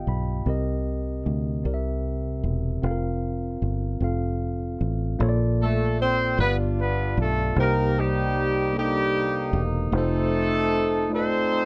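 A slow, straight 6/8 pulse carries this jubilant, soulful gospel passage, cut from a longer piece. A mellow tine electric piano, clean and speaker-colored, opens with a short fill and then comps through chords such as Cm7, Fsus4 and Bbmaj7, while a foam-muted fingered electric bass sits punchy and direct underneath. At 5.2 s the harmony moves into a new section, and at 5.6 s a tight, smooth-topped horn section takes the melody in pop-style octave doubling, all set up front in a dark, dry production.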